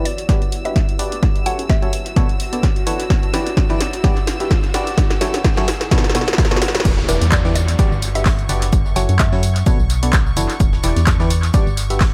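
Piano house at 128 BPM in E dorian, bittersweet and energetic, this cut from a longer piece rides a swung groove built on an up-front, layered electronic kick and a punchy, tape-warm analog drum machine with crash, claps, hats, snare and tambourine, all over a dark, hollow, organ-like FM bass and a biting, full-bodied FM electric piano riff with chorus and dub echo that carries a filter sweep through the build-up and drum fill to the drop at 6.9 seconds. Around them sit a woody, warbling mallet-like synth pluck melody, a background violin section holding warm sul tasto chords, a very quiet granular cloud pad, a faint riser and downlifter, and, from the drop, a gritty, compressed breakbeat sampler-style kit with hi-hat, shaker and snare. The echo-heavy, loud mix cycles through Gmaj7, F#m7, Bm9 and Em7 under light digital ambience, with sidechain pumping on the bass, electric piano and strings.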